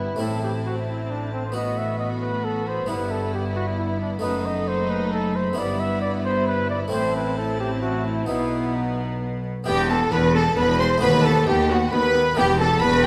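In a straight triple metre, this dramatic, driving baroque-style concerto movement, cut from a longer piece, sets a mellow solo trumpet with light vibrato up front, over a rich, vibrato-laden violin section carrying a high melody, a focused second violin line, a round French-style harpsichord accompaniment, a lush viola section in the background, and clear, distant cello and intense double bass sections sharing the bass, with the ensemble placed in a reverberant recital hall.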